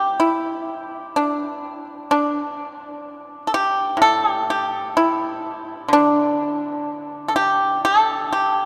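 A solo pipa, played with fingerpicks, sits up front with a dry, percussive attack, ranging from A2 to A4 across this brief 8.7-second fragment of a longer traditional Chinese piece. The mood is pastoral and elegant, with a free, rubato feel around 63 BPM in 4/4. A long cathedral-like reverb from a church or concert hall trails behind each plucked note.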